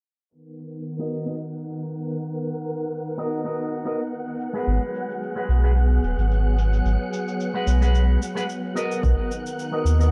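A deep, round sine sub bass sits up front from 4.7 seconds in this blissful sunset chillout excerpt at 110 BPM in B major, with a gentle 16th-note swing moving between Bmaj7 and G#m7. Beneath it, a silky vintage string machine holds slow-blooming chords through phaser and ensemble chorus, while a clean, picked electric guitar with an envelope filter and filter sweep adds accompaniment through a low-pass filter and tape echo. A gritty, compressed shaker ticks throughout, an airy, breathy wind-like noise texture drifts in high from 1.7 seconds with its own reverb, and a punchy layered electronic kick lands once in the background at 9.0 seconds, all in a dark, dry mix.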